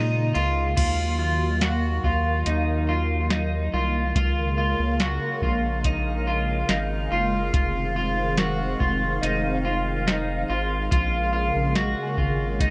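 A slightly broken-up electric guitar, dark and up front with lush chorus and tape echo, picks hazy arpeggios over a swirling phased analog pad and a round analog bass, with a soft vintage rhythm box of deep kick and metallic hats entering at 0.4 seconds, in this haunting 71 BPM dream pop excerpt in Eb dorian that moves from Bbm7 to Ebmadd9 and on through Bbm7 and Fm7, with a delicate, bell-like celesta slipping in very quietly at 8.4 seconds under light reverb.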